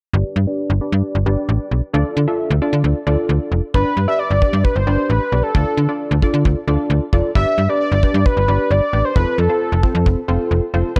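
A straight four-beat pulse drives this upbeat, nostalgic synth-pop passage, cut from a longer piece. For the opening stretch a funky polysynth comp and a slap-like FM bass play together, the sawtooth-and-triangle comp sounding mellow and plucky under chorus and a low-pass filter while a filter sweep moves across it, and the bass snaps out with a metallic, digital attack that then decays. At 3.7 seconds a tight, dry acoustic kick drum enters up front, and an octave-doubled lead arrives with it, its bold, nasal, retro tone carrying vibrato and chorus. The harmony rocks between G and D minor before turning to F near the close. A light studio reverb wraps the whole mix, and all four parts sit forward until the passage ends at 11.0 seconds.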